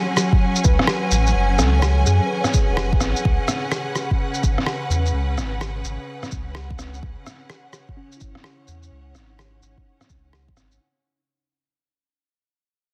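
Future garage with a ghostly, melancholic mood and a swung sixteenth-note feel, moving from F#m to C#m7 in this fading clip cut from a longer piece. Biting, lush bowed strings hold sustained chords and pump against the sidechain alongside a worn, slightly out-of-tune tine electric piano set in the background, which is filtered, tape-echoed and given a filter sweep. A muffled, pitched-down rim click and shaker with soft-clipped snare enters at 0.2 seconds, a deep, tape-warm kick at 0.3 seconds and a round sine sub bass at 0.6 seconds, all under light reverb, vinyl crackle and a dense, heavily limited master.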